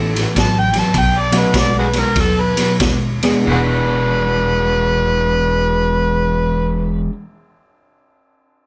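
A swung 4/4 electric blues shuffle, slowing in its first 3.5 seconds within 87-106 BPM, swaggers and grits along in E mixolydian as a boomy, saturated garage drum kit with a high-tuned snare and ride cymbal drives up front until 3.3 seconds, a woody pizzicato upright bass and bright picked overdriven guitar riff with spring reverb churn beneath, a polished upright piano sits in the background, a very quiet clean lap steel adds fingerpicked slide swells, and an amplified, overdriven harmonica leads with tongue slaps, scooped notes and light vibrato in a moderate club room.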